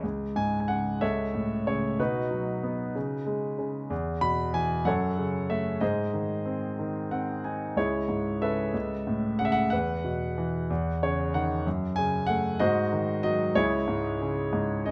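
A clear concert grand piano carries this wistful, reflective classical solo alone, its deep bass and long sustain sitting up front in a natural, detailed sound with light reverb. Played with rubato in 6/8, the lyrical line moves through a minor-key progression that settles on F#m and G#7 before resolving home. Brief piano fills arrive at 6.8 and 10.7 seconds, and another at 14.5 seconds closes this short cut from a longer piece.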